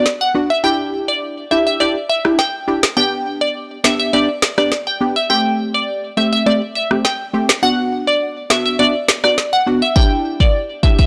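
A straight 4/4 pulse at 103 BPM from an electronic afro-pop drum kit, its deep kick, rim click and woody snare placed up front from 0.1 s, drives this tough, hypnotic dancehall passage in E minor, where punchy, detuned sawtooth-and-square chord stabs pump with sidechain beneath a glassy, crystalline wavetable pluck melody dressed in chorus and ring modulation, set in digital ambience with a dry, gritty hardware sound through a break that runs to 7.6 s.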